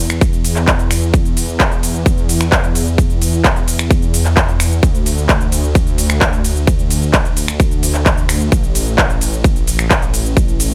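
Triumphant and uplifting, this short excerpt of festival progressive house drives forward at 130 BPM in a straight 4/4. A thick, detuned sawtooth bass sits up front from the start, its unison voices given a lush chorus and a sidechain pumping effect, holding a mellow, sustained tone with a fast attack in the low register between A1 and E2. Just after, a layered big-room dance kit enters with crisp hi-hats, ride cymbal, handclaps, finger snaps and cabasa, all pushed through overdrive. An overdriven electronic kick, punchy and placed prominently in the mix, arrives at 0.2 seconds and carries the pulse until 10.5 seconds. The parts play within a digital ambience, giving the produced, forceful sound a sense of space.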